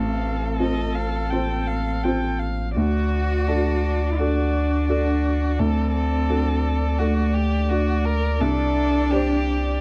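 A dry, close 1970s-style studio sound frames this brief, intimate and hopeful neoclassical passage at 85 BPM with a rubato feel, where a distant, expressive violin carries the melody with vibrato and portamento over a focused cello second line, a soft felt-muted upright piano with vintage, short-sustained tone, a smooth, even viola, and a deep, punchy sine sub bass with a pitch-drop attack sitting up front, all moving from F/A to D at 2.8 s and to Csus2 at 8.4 s.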